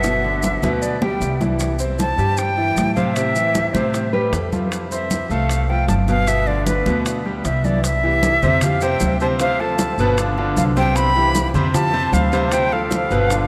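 A drum fill opens this sunny, danceable Latin son and guajira excerpt as an airy, expressive metal flute with vibrato sings up front over brilliant concert grand piano arpeggios, a woody, growly pizzicato upright bass, very quiet round bongos, grainy maracas and thick-skinned congas in the background, with a dark, thumb-plucked nylon-string guitar slipping in briefly at 4.1 seconds, set in a vast, echoing cathedral reverb.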